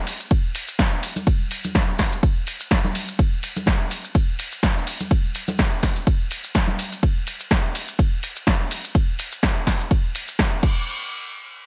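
Set in a digital ambience, this joyful, uplifting house drop, cut from a longer piece, rides a lightly swung sixteenth-note feel. Up front, a layered, tape-warm electronic kick hits hard beneath an analog drum machine whose crash, hi-hat, ride, shaker and punchy snare were re-recorded in a large room. Close, dry acoustic tambourine and ringing congas brighten the groove until they stop at 7.0 seconds.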